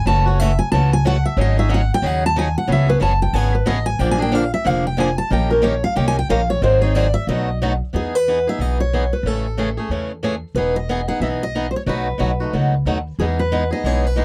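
A full-bodied steel-string acoustic guitar carries the melody and takes a solo through the first 7.9 seconds of this lively, charming jazz manouche clip, swinging at 183 BPM over minor-seventh and dominant chords before settling into E major with Emaj7 and Amaj7 changes. A bright, boxy swing-style rhythm guitar supplies the accompaniment, while a woody, thumpy pizzicato upright bass on gut strings anchors the low end. All three sit up front in a dry, close 1970s-style studio sound.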